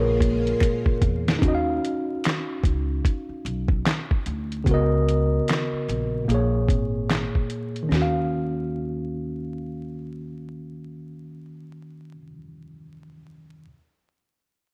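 A hazy, reflective lo-fi hip hop cut from a longer piece, wrapped in vinyl crackle and light studio reverb, sits in Eb minor at 74 BPM with a swung 16th-note feel, moving through Bbm7, Ebm9 and Db13sus4. A worn, slightly out-of-tune tine electric piano carries the accompaniment up front alongside a woody pizzicato upright bass and a compressed, muffled, pitched-down sampler drum kit of thumpy kick, medium-tuned snare, hi-hat and handclaps, which opens with a fill and drops out at 8.1 seconds. Only in the first moments do a dark, ringing soft-mallet vibraphone melody with analog delay, a lush sawtooth string machine with phaser and ensemble chorus, and faint saturated finger snaps in the background appear, while the bass holds until 12.2 seconds and the piano rings on to 13.7 seconds.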